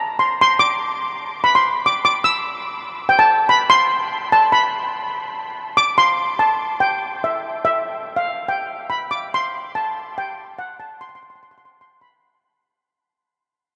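Festive and bouncy, this calypso fragment at 144 BPM in C major features a lone steel pan playing lead, its metallic, shimmering tone struck with medium rubber sticks and placed up front. The pan sits high, between E5 and E6, and rings out from 0.0 to 12.4 seconds inside a vast, echoing space whose huge ambient reverb trails for about 8.3 seconds. A fade-out begins at 6.2 seconds as the passage moves into its second section, carrying the sound away before the cut.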